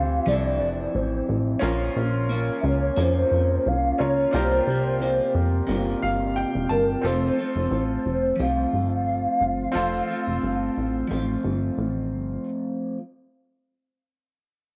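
A hollow, warbling clarinet-like synth lead with ensemble chorus and cassette tape character carries the melody in this sunny, laid-back bedroom-pop excerpt with a gentle swing, over a slightly broken-up electric guitar with lush chorus and warbly pitch drift, a bright, woody upright piano with audible action noise that plays a fill at 5.7 seconds, and a punchy, funky analog bass, all set in moderate spring reverb on a home cassette recording as the chords move from Fmaj7 through Bbmadd9 and C7sus4 to land on F at 7.0 seconds.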